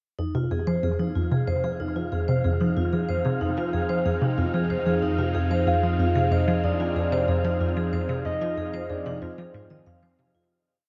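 This is ambient, sequencer-driven space music in F minor at 93 BPM, expansive and cosmic in mood, resting on a single Fm7 chord. A squelchy, resonant blip pluck sits up front with a 6-step loop that drifts against the bar, treated with phaser and tape echo. A close-miked vibraphone, dry and metallic under medium hard mallets, rings out a 5-step arpeggiated loop of its own, also drifting against the bar. Beneath them, a swirling phased analog pad holds slowly shifting chords and a mellow, detuned analog drone sustains the root in the background, both fading in, while a breathy, wind-like noise texture holds a high note from 0.9 seconds. At 5.7 seconds a round, octave-layered synth lead with vibrato and chorus enters, tracing arch-shaped motif phrases. Everything sits in a vast, echoing space with a long reverb tail and a dark top end, and the piece fades out from 7.1 seconds.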